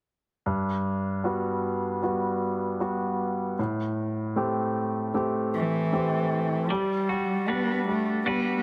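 Bathed in a moderate plate reverb, this short, heartfelt and hopeful pop fragment opens with a clear, polished baby grand piano playing sustained accompaniment up front; a dark, bowed solo cello enters at 5.5 seconds with an expressive melody full of vibrato and portamento, and at 6.7 seconds a clean, picked semi-hollow electric guitar adds arpeggios through spring reverb.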